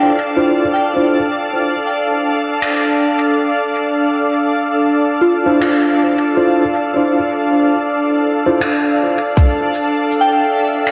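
A hazy, spacious ambient dub fragment at 80 BPM in D minor opens on a bright, organ-like pad sustaining a Dm9 chord with ensemble chorus, tremolo and its own reverb, while a soft FM synth bell plays arpeggios in the background through chorus, tape echo and a filter sweep; a mellow tine electric piano adds dub-echoed stabs from 0.4 seconds, filtered finger snaps and cabasa join at 2.6 seconds, and a tight electronic kick appears briefly at 9.4 seconds as the harmony moves to Dmadd9, all within a dreamy mix soaked in lush hall reverb and vinyl crackle.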